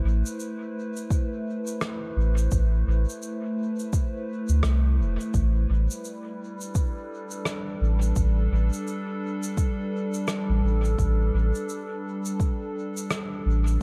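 Deep and meditative, this swung ambient dub fragment pairs a warbling, nostalgic lo-fi pad, detuned and washed in chorus, phaser and reverb, with a round, soft sub bass up front, while a shaker and rim click ring through dub echo from 0.3 seconds and a deep, tape-warm electronic kick joins at 1.1 seconds, as the harmony moves from Am to G/A at 5.3 seconds in a dark, small-room mix.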